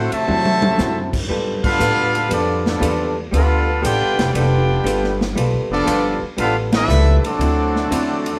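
Brassy and joyful, this short big band swing cut at 118 BPM sets a clear trumpet section with vibrato up front on the melody over a soft-attack trombone second line in the background, a dark, clean hollow-body jazz guitar comping through D9 and G9 chords, a woody, thumpy pizzicato upright bass, and an airy, punchy drum kit that opens with a fill at 0.3 seconds, with band accents landing at 1.6 and 6.6 seconds in a live room with moderate reverb.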